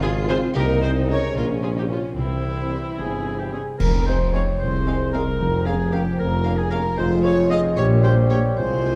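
A metallic, ringing vibraphone takes up the melody at 3.0 s in this sneaky, mischievous cinematic film cue in F minor, a playful, whimsical 6/8 at 75 BPM. A background violin section with rich vibrato carries the opening tune over a smooth, distant viola section, a very quiet mellow French horn section and fingerpicked harp arpeggios, while intense double basses, even cellos and a close-miked tuba hold the bass. An intimate sul tasto violin line, a hollow flute, a roomy oboe and, from 4.1 s, a background clarinet and a bassoon add further lines, bright clash cymbals with concert bass drum mark an accent at 3.8 s, and moderate scoring-stage reverb lends the whole a dark production.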